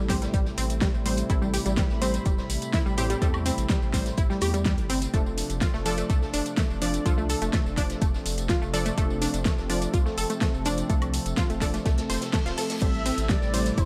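A mellow sawtooth pad holds sustained chords in the background from the first moment, joined by two lush, detuned unison plucks, one playing arpeggios and the other stabs, both trailing dub echo, over a round, dark analog bass; every one of these parts breathes with sidechain pumping. This is a driving, expansive progressive house excerpt at 125 BPM in a straight 4/4, moving from Am7 to F6 and back to Am7. A deep, up-front electronic kick leads the drums, layered with a deep house kit of fat snare, metallic hats, ride, crash, tambourine and woodblock, and beneath them sits a very quiet, gritty, saturated breakbeat kit with a rolled-off top, carrying snare, hi-hat and shaker. At 12.0 seconds a reverse cymbal sounds in the background, and at 12.8 seconds a smooth, expressive portamento lead enters with vibrato and ensemble chorus, carrying a short melody. The mix is dry, with little reverb, keeping the punchy plucks and kick in sharp focus.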